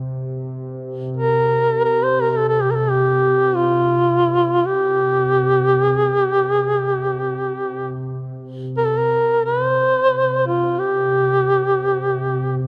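Solemn and longing, this Caucasian folk lament moves in free time, tuned slightly low to A4 = 437 Hz, and is cut from a longer piece. A warbly, tape-like pad sounds from 0.0 seconds, holding a low drone on C3 with a detuned, lo-fi sawtooth-and-triangle tone, slow attack, long release, chorus and its own built-in reverb that lend it a nostalgic, mellow haze. At 1.2 seconds a warm solo duduk enters up front, singing a folk-style melody between F4 and C5 with vibrato and scooped notes. Close, detailed microphones capture the reed's intimacy, set over the softer drone, and light room reverb surrounds the pair. Both voices continue together to the close at 12.7 seconds.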